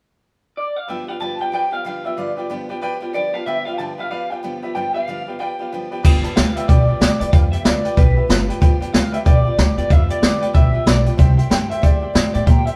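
A moderate stone-room reverb surrounds this rowdy, upbeat rockabilly excerpt, recorded as a band playing live together at 187 BPM in 4/4 with a swung eighth-note feel in G mixolydian. A twangy, slightly broken-up electric guitar through a small old amp carries the melody from 0.6 seconds, its lo-fi tone colored by a phaser. A brilliant upright piano and a picked dreadnought acoustic guitar, with audible finger squeak, fill in the accompaniment over a steady G7 chord. At 6.0 seconds the upright bass and a brushed drum kit join. The bass is thumpy and woody, with gut strings played pizzicato, and the drums sit up front with a high-tuned snare, boomy kick, dark cymbals and a rolled-off top. The harmony moves to C7 at 11.2 seconds before the cut.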